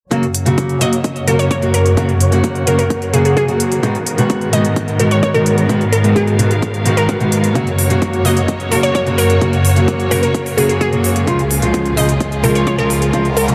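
Euphoric and triumphant, this festival progressive house excerpt in F# major drives at 129 BPM in a straight 4/4, cut from a longer piece, with a dark, boxy fingerpicked steel-string acoustic guitar and a clear, focused string section holding sustained bowed chords with vibrato, both up front and pumping to the sidechain while a filter sweep runs across the strings. A punchy electronic kick and crisp hi-hats carry the beat, and from 0.8 seconds a glassy, crystalline wavetable pluck sings the melody with chorus, a cassette-tape tint and diffuse ambient delay. The chords move from F# through G#m7 and back to F# before landing on C#, everything bathed in a dreamy, reverb-soaked haze, until an electronic noise sweep enters at 13.2 seconds.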